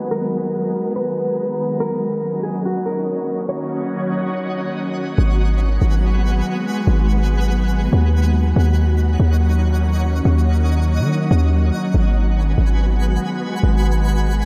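Hazy, low-pass-filtered digital ambience frames this spacious half-time hip hop excerpt at 142 BPM in G# minor, where a glassy, ethereal FM pad with ensemble chorus holds sustained chords beside a twinkling granular texture with octave-up shimmer, a dark, clean electric guitar with spring reverb and tape echo carries the melody until 4.7 s while a filter sweep runs through the opening 5.2 s, and a deep, boomy 808-style bass enters up front at 5.2 s beneath the G#m7 and D#m7 changes.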